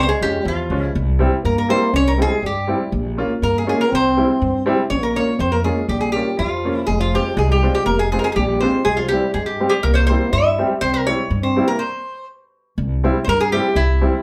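Heard from further back in a small, wet room, this festive, soulful klezmer piece in C phrygian dominant moves along at 122 BPM in a straight 2/4. A bright, nasal lap resonator guitar carries the melody with slide and fingerpicks up front, while a mellow trombone with light vibrato plays a smooth second line until 11.8 seconds. A dark, thumpy pizzicato upright bass on gut strings and a woody upright piano with short sustain fill out the accompaniment, and after a stop from 11.8 to 12.8 seconds the opening section returns.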